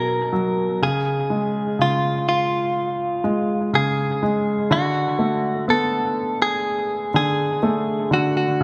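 Pop, tender and heartfelt, cut from a longer piece: a clean, picked electric guitar recorded direct carries the melody up front, its compressed, scooped tone touched with analog delay. A clear grand piano accompanies between B2 and B3 throughout the 8.6 seconds, intimate and polished with audible action noise and short sustain, also fed through analog delay. Moderate spring reverb and small room ambience give the mix an echo-heavy sheen, with the harmony moving from B5 to C# and reaching D6 at 4.7 seconds.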